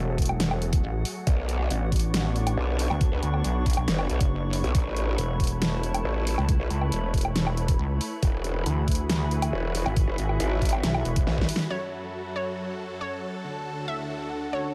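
Heavy wobble dubstep in F# minor at 138 BPM with a half-time feel, this aggressive, chaotic drop from a longer piece layers a pulsing, detuned pluck wobble bass with a growling, formant-filtered growl bass entering at 1.3 seconds, both overdriven and up front over an overdriven knocking electronic kick and a dubstep kit with a huge snare, bright hats and woodblock. Huge, lush supersaw chords with sidechain pumping and a low-pass filter sustain beneath a warbling, nostalgic lo-fi pad that carries chorus and its own reverb, moving through F#madd9, Bmadd9, Aadd9 and Eadd9. After a drum fill and a band accent at 11.6 seconds, a punchy, ring-modulated unison pluck melody enters at 11.7 seconds alongside the chords and pad over F#m and D chords, all in light reverb.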